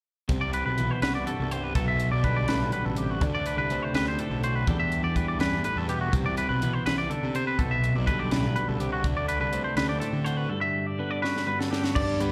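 Wistful and playful, this short cut from a longer math rock and midwest emo piece moves at 82 BPM in a straight 6/8 in G major, cycling through Cmaj9, G/B, D7 and Em7 before settling on Gmaj7. A clean, warm twelve-string electric guitar carries the accompaniment alongside a fuzzy, overdriven picked bass and a crisp, airy fusion kit with a high-tuned snare and punchy kick. From 0.4 seconds a bright, twangy guitar with slapback echo plays arpeggios up front, and a drum fill at 11.2 seconds closes the passage, all heard through a venue's PA with recital hall reverb.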